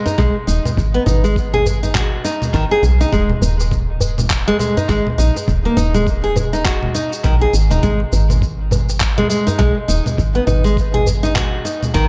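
A fingerpicked nylon-string guitar sits up front in this organic downtempo piece, its classical arpeggios running from D#3 to G#4 and trailing a dub echo. The mood is warm and hypnotic at 102 BPM in 4/4, with a 59% swing on the 16ths, and the G# minor harmony moves from G#m to D#sus4 at 3.1 seconds and on to G#5 at 7.8 seconds. Underneath, a woody FM bass plays soft, round, dark notes with a fast attack and decaying tail, pumping against a sidechain. Sampler-style electronic cabasa, congas and handclaps sound gritty, compressed and tape-warm, re-recorded in a large room and fed through analog delay. In the background, a thumpy electronic kick keeps the pulse, while a tight, cracking djembe, close and dry, adds its own analog delay. Light reverb and an echo-heavy mix give the whole excerpt a floating, trance-like depth.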